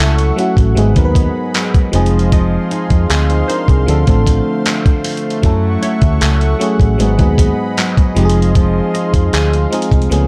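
Dark, close and nearly dry, this moody, sensual contemporary R&B clip moves at 77 BPM in a straight 4/4, cut from a longer piece. A gritty, compressed sampler-style drum kit with a thumpy kick, hi-hat and handclaps sits up front beside a round, punchy, foam-muted electric bass, both carrying the most weight in the mix. Above them, an FM electric piano with a bell-like attack and a warbling, vintage chorus plays the accompaniment, while a smooth, detuned sawtooth pad with a slow attack holds sustained chords under its own chorus and sidechain pumping. A bright, fingerpicked nylon-string guitar plays arpeggios in the background, and from 2.3 seconds a very quiet, crystalline wavetable pluck adds an evolving digital texture with a filter sweep. The chords drift through minor sevenths, F#m7, G#m7, Fm7 and Dm7, before circling back to F#m7 at 5.4 seconds.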